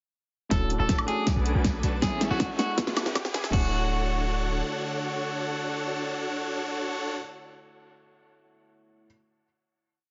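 A bright, euphoric future bass piece at 159 BPM in a half-time feel, set in D lydian. Huge, detuned supersaw chords carry a rhythmic riff up front, their filter sweeping through the build from 0.5 to 3.5 seconds, while a slightly broken-up, twangy electric guitar plays a repeating riff melody through digital delay. Beneath them, a breathy pad with chorus and phaser sustains chords in the background, and a felt-muted upright piano adds soft, intimate held chords with syncopated pushes, its action noise audible. A deep, boomy 808-style bass follows the chord rhythm, and an overdriven kick and pop kit with a fat snare, metallic hats, hat rolls, woodblock and crash drive a drum fill, joined by a very quiet riser from 2.0 seconds. The drums drop away at 3.6 seconds, leaving the final Dmaj7 chord ringing under light reverb, and the piano lingers alone until 9.1 seconds.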